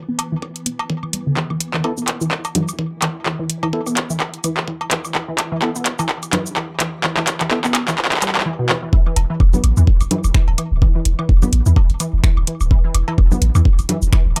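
A very quiet, swarming drone opens this cool, sparse minimal techno excerpt, joined at once by a squelchy, resonant blip pluck riff with sampler grit, tape echo and a filter sweep, metallic garage hats with cabasa, snaps and claps, overdriven cowbell, woodblock and congas, a knocking up-front kick and, from 1.8 s, a hollow organ stab, building through drum fills to a break at 8.5 s before a deep, punchy sub bass drives the drop from 9.2 s in a dry, gritty hardware sound.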